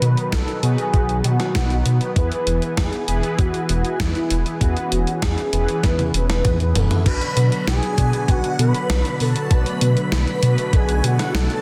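A dense, heavily limited mix with light reverb carries this driving, cinematic synthwave excerpt at 98 BPM in B dorian, where a deep, rumbling detuned saw bass sits up front with tube saturation and sidechain pumping, a gated 80s digital drum machine and thumpy electronic kick lay down a straight 4/4 with a drum fill at 5.8 seconds, a brassy analog pad fills the background while mellow synth brass adds stabs, an expressive, smooth synth lead carries the melody through ensemble chorus and delay, and at 7.1 seconds shimmering string-machine violins join with a second line as the harmony moves from B and E to B minor.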